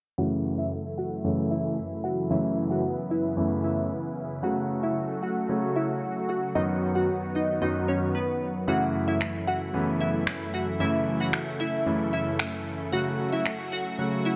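A dark, warm production with light reverb frames this energetic, confident dance-pop excerpt, cut from a longer piece and moving in a straight 4/4 feel. A glassy wavetable pluck carries the melody from the start, its crystalline, ring-modulated tone coloured by chorus, a low-pass filter and dub echo. Beneath it, a clear concert grand piano plays the accompaniment up front, intimate and polished, with deep bass, long sustain and audible action noise. A lush unison pad holds sustained chords, thick and detuned with a slow attack and long release, and it also runs through chorus and a low-pass filter. A filter sweep spans the whole passage, and electronic finger snaps with a tape-warm, produced edge join up front at 9.2 seconds before dropping out at 13.6 seconds.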